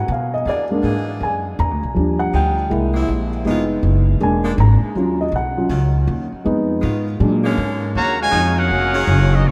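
A dark, intimate baby grand piano solos over woody pizzicato upright bass from 0.0 seconds, its action noise audible up front, while a tight, warm saxophone section enters at 0.5 seconds with sustained chords beneath. This sultry, brassy swing jazz fragment in Eb minor moves at 160 BPM through rich, altered harmony, all set in a vast, echoing cathedral-like space. At 8.0 seconds a clear, smooth-topped trumpet section takes the melody up front, with a mellow trombone section adding a second line with light vibrato.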